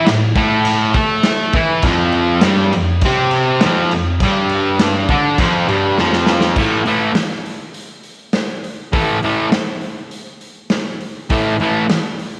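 A double-tracked fuzz guitar drives this menacing, raw garage rock excerpt in A minor at 102 BPM, its bright, distorted riff moving between A5 and F5 power chords up front. A gritty, saturated acoustic drum kit with a punchy kick, medium-tuned snare, hi-hat and crash sits alongside it, its rolled-off top heard in a bright stone room, and a drum fill at 6.0 seconds leads into the second section at 6.6 seconds, where the riff returns to A5. A moderate echo-chamber reverb hangs over the whole short, straight-feel cut.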